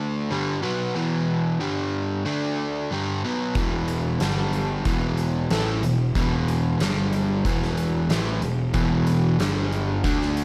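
An overdriven, double-tracked semi-hollow guitar opens alone, sitting up front with a hollow-body tone as it picks a smoky, gritty E minor riff over Em, G5 and D5 at a straight 92 BPM in 4/4. At 3.6 seconds a growly fuzz bass and an oversized, low-tuned drum kit join, the kit bringing a fat snare, punchy kick and hi-hat in a saturated stone-room sound, while the riff moves between G5 and E5. The blues rock and southern rock passage sits in a moderate club reverb and is cut off at 10.4 seconds as part of a longer piece.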